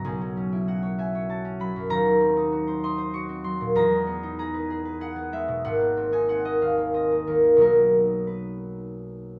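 A close, detailed and nearly dry recording places a warm, ringing concert harp up front in this gentle, mysterious classical excerpt for solo harp, which moves in a rubato 3/4 at roughly 78-98 BPM across a range from Ab1 to Db6, its fingerpicked chords drifting from B9sus4 through Ebm6, Emaj7#11 and Abadd9 to Bmaj7 over 9.4 seconds.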